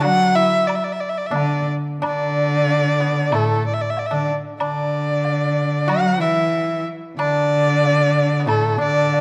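A dark production set in a moderate concert hall reverb frames this graceful, pastoral excerpt of Chinese traditional chamber music, which moves in a free, rubato two-beat feel and shifts into a new section at 2.0 seconds. Up front, a rich, smooth erhu carries the melody with vibrato and portamento, beside a clear, focused bowed cello on a lower second line that also sings with vibrato. In the background a dry, percussive pipa plucked with fingerpicks adds a further line, while a very quiet, close woodblock taps lightly beneath.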